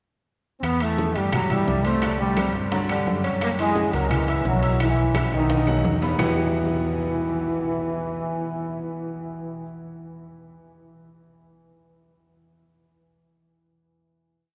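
Fiery and danceable, this short salsa piece puts a clear, punchy trombone section up front with motif-based call phrases, over a dark, round tumbao from a hollow-body short-scale fingered electric bass and a bright, brilliant piano montuno in octaves on a concert grand, while tight high-tuned bongos, woody claves on a two-bar time line, very quiet thick-skinned congas with slaps and open strokes, and distant ringing metal-shell timbales fill out the rhythm through a drum fill at 5.3 seconds before the percussion stops at 6.3 seconds, leaving trombones, bass and piano to hold a final chord in a wet cathedral reverb.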